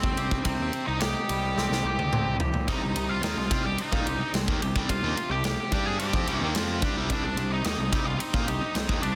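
An up-front, dark octave-fuzz lead guitar carries the melody with distortion and tape echo over a punchy, bright-cymbaled rock kit, a growly overdriven picked bass, a clean, twangy arpeggiated guitar in the background and a bright overdriven riff guitar that enters at 2.7 seconds after a drum fill, giving this cut from a quiet-loud alternative rock piece a cathartic, dark mood in a small room with a dense, heavily limited modern master.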